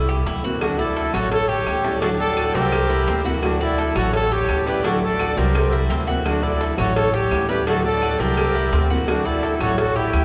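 A close-miked, whispered trumpet with soft-attack vibrato carries the melody in this sunny Cuban son and guajira passage in D major at 170 BPM, joined by a bright, reedy jazz flute on a second line in the background, over metallic, picked arpeggios from a double-strung tres, a fingerpicked nylon-string guitar, a dark, woody pizzicato upright bass up front, a tight, high-tuned cowbell and very quiet claves, all set in the long, wet reverb of a church or concert hall.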